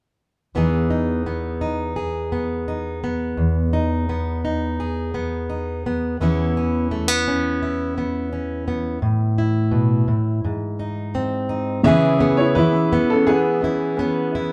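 At a relaxed 85 BPM in straight 4/4, this intimate, heartfelt acoustic folk-pop ballad in E major opens with a fingerpicked, plugged-in steel-string jumbo guitar, full-bodied and up front, carrying the accompaniment alone from 0.5 seconds. Its chords move from Emaj7 through C#m7/E, A5 and G# before settling on C#m7 as a new section begins near 11.9 seconds. At 11.8 seconds a clear, somewhat boxy grand piano steps forward with the melody, while a felt-muted upright piano sits in the background with soft, mellow arpeggios, its action noise audible. The players sound as if they share one room, wrapped in a wet studio reverb that adds gentle space to the close, personal mood. The passage is cut from a longer piece and breaks off at 14.5 seconds.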